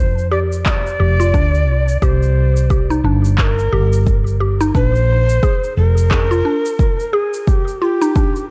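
Breathy cedar flute and a dark, round fretless electric bass open this short organic downtempo clip together, the flute carrying a vibrato-laden melody with a crisp, chiffy attack and trailing delay while the bass sits up front with a sidechain pumping feel. At 88 BPM in 4/4 with a swung sixteenth-note feel in F dorian, the mood is mystical and earthy. Overdriven electronic shaker and handclaps slip in almost immediately, joined by a warbling, mallet-like FM synth pluck whose fast-attack, decaying arpeggios are coloured with chorus and delay. A deep, overdriven electronic kick drum arrives at 0.7 seconds and stays up front, its layered sound carrying the ambience of a large room. The harmony moves from Fsus2 through C7 and Bb7, both voiced with their thirds omitted, to Ebmaj9, and the bass drops out at 6.4 seconds while the flute and percussion continue. Light reverb and a digital ambience wrap the whole in a dark, warm production.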